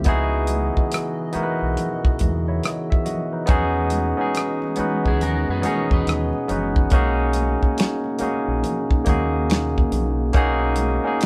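A barky, lightly overdriven tine electric piano carries the accompaniment in this warm, smooth neo-soul R&B excerpt at a swung 70 BPM in B major, over a dry, damped 70s drum kit with finger snaps and rim clicks, a round, dark fingered dub bass, distant congas, a hollow, airy chorused pad in the background, and a twangy, slightly broken-up electric guitar that appears only from 5.1 to 6.9 seconds, all moving through C#m9, Emaj7 and Bmaj9 in a lightly reverberant live room.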